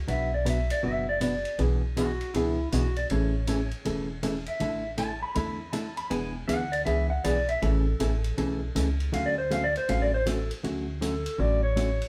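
Country western swing at 159 BPM in D major with a cheerful, down-home lilt, where a twangy lap steel guitar takes a slide solo with volume swells over a growly, woody upright bass, an up-front, compressed hollow-body jazz guitar and a distant, roomy big-band drum kit on hi-hat and ride, before a breathy, mellow clarinet with scooped notes and light vibrato enters at 11.0 seconds for a brief solo, all in a moderate studio reverb with a live, one-room feel.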